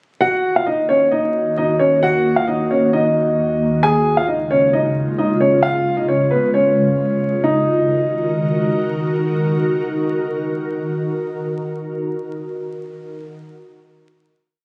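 Brooding and dark, this short hip hop piece leans into trap at 133 BPM in a half-time feel, set in Eb minor. A dark grand piano carries the melody from 0.2 seconds, its mellow, vintage tone doubled in octaves and repeated like a sampled loop, softened by a low-pass filter and trailed by delay. From 0.9 seconds an ethereal, airy pad holds sustained chords beneath it, its detuned sawtooth layers and noise shimmering through ensemble chorus, phaser and its own reverb, with a slow attack and long release. The harmony moves from Eb minor to Db and back to Eb minor, where the piano drops out at 8.8 seconds and the pad rings on alone as the final chord until 11.5 seconds. The sound has the intimate feel of a phone recording in a room, with studio ambience, vinyl crackle, light reverb and compression giving it a worn, lo-fi character.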